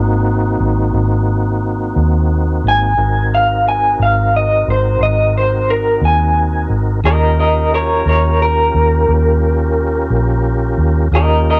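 Gritty and laid-back, this slow blues in 12/8 at 59 BPM sits in Ab mixolydian, moving from Ab7 to Eb7 at 7.0 seconds in a short cut from a longer piece. A smooth, clean tonewheel organ holds sustained chords with key click, chorus vibrato, a stopped rotary speaker and cassette tape coloring, while a dark, round, foam-muted fingered electric bass sits up front. At 2.7 seconds an electric guitar through a small old amp enters with a slightly broken-up, compressed, lo-fi melody with tremolo and cassette tape character, all in a dry home cassette recording with little reverb.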